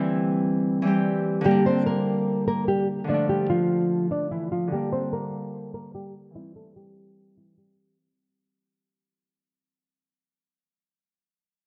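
Light studio reverb surrounds this eerie, dark hip hop fragment in G dorian, cut from a longer piece and moving at 147 BPM with a half-time feel. A bright, ringing, fingerpicked Celtic harp sits up front behind a low-pass filter and opens alone over C before a dark, thumb-plucked nylon-string guitar enters at 1.5 seconds with a classical melody, finger squeak audible and tape echo trailing its filtered tone. Across the Gm, Dm and C changes a filter sweep and fade-out run until the guitar stops at 8.0 seconds, and the harp rings on to 10.4 seconds.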